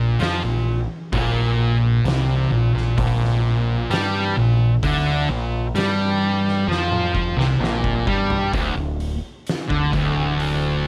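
Brooding and ominous, this stoner and doom metal passage in a straight 4/4 rests on a Bb5 chord, carried by two dark, picked fuzz guitars, one up front and one in the background, over a growling fingered electric bass with overdrive and tube saturation. An oversized low-tuned acoustic drum kit enters at 0.2 seconds with a boomy kick, fat snare, hi-hat and toms in a bright stone room, its sound saturated and gritty. The drums play a fill from 6.7 to 8.5 seconds, after which the harmony gives way to a chordless closing stretch, all set in light reverb.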